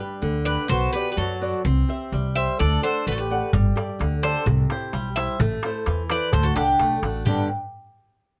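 A straight 2/4 pulse that speeds up drives this sunny, hopeful piece of Greek bouzouki-band folk, where a bright, metallic, picked bouzouki with octave-doubled strings carries the melody up front from 0.5 s over a reedy, mellow accordion second line, a boxy, fingerpicked flamenco guitar with audible finger squeak and a woody, thumpy pizzicato upright bass, until a crisp, deep metal-shell darbuka played with hard hands joins at 3.5 s, all heard through close, detailed microphones with little reverb.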